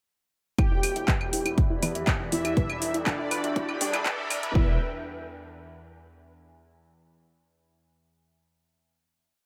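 A light digital ambience and a little reverb frame this short, dark and hypnotic melodic techno piece, in which nearly every part arrives together at 0.6 seconds and drives through a single build before a final chord rings out from 4.6 seconds. A heavy, tape-toned electronic kick sits up front with a four-on-the-floor pulse, joined by an overdriven deep house kit of metallic hats, claps and claves playing a programmed hat pattern and backbeat. Underneath, a very quiet, gritty driven synth bass rolls in sixteenth notes, while a tight sequenced synth loops a six-step arpeggio that drifts against the bar and a muted, deep dub chord stab holds power-voiced chords with syncopated pushes. In the background, a bold, brassy analog synth brass repeats a riff melody, doubled an octave higher by a smooth soft supersaw, over a bright, full-bodied sweeping resonant pad with a touch of 12-bit sampler grit. 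From 1.4 seconds an overtone-sweeping drone adds moving overtones, and a riser climbs through the build as filter sweeps open the arpeggio, stab and pad, with the synths above the bass breathing with sidechain pumping over chords that move from Em7 to Gadd9 and settle on E5.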